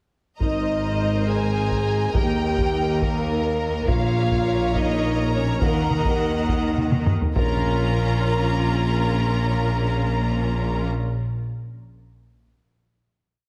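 Heroic and dramatic, this short, complete piece of epic orchestral film music moves at a stately 69 BPM in 6/8, set in Bb minor. A warm symphonic violin section carries the melody, doubling the tune at the octave with lush, vibrato-rich bowing, while a second, clear violin section and the violas add tremolo sustained chords beneath it. A mellow French horn section with a soft attack and a vintage, classical character holds sustained chords and shares the melody. The low end is deep and layered: a dark, close-miked tuba and a symphonic double bass section double the bass line, and a distant cello section sustains the bass in the background. Heavy-stick taiko drums, compressed and saturated, drive a big ostinato through the theme, hit a fill at 6.9 s, and fall silent at 8.5 s after the final Bb minor chord arrives at 7.4 s. The whole orchestra sits in a wet concert-hall reverb, yet the mix has a heavily compressed, radio-like sound.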